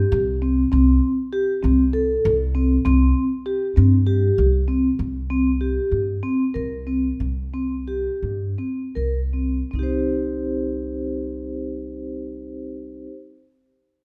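Set in a restless 7/8 with a straight feel, this contemporary chamber piece moves at 150-197 BPM in eighths and slows down between 5.0 and 9.7 seconds before settling on a C minor chord at 9.7 seconds. A soft-mallet vibraphone plays mellow, ringing arpeggios in the middle register with a slow motor vibrato, while a woody pizzicato upright bass holds the low end, both sitting up front. The pensive mood is framed by a moderate recital hall reverb in this excerpt from a longer piece.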